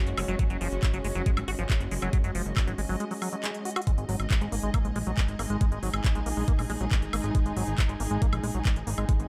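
A knocking, tape-warm electronic kick sits up front in this driving, hypnotic psychedelic trance excerpt alongside a drum and bass kit of crisp hats, handclaps and woodblock, while a fat, detuned sawtooth analog bass thickens the low end. A squelchy, resonant acid bass riff with chorus and delay sweeps above, as a morphing, warbling wavetable pad and a dark, woody string section with vibrato pump softly in the background. A short break at 3.0 seconds, with a drum fill at 3.7 seconds, leads into a shift from F#5 to G#5 at 3.9 seconds, all in a dry mix.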